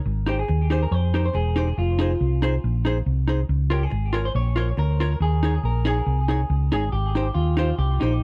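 A dark, lightly reverberant production frames this cheerful, upbeat ska clip with a gentle swing, where a round, punchy, amped short-scale hollow-body bass sits up front from 0.1 s, a clean, compressed vintage hollow-body jazz guitar plays picked accompaniment, and a fingered semi-hollow electric guitar carries the melody through tape echo over an Abmaj7, Fm7, Db6 and Eb7sus4 progression that returns to Abmaj7 at 6.9 s.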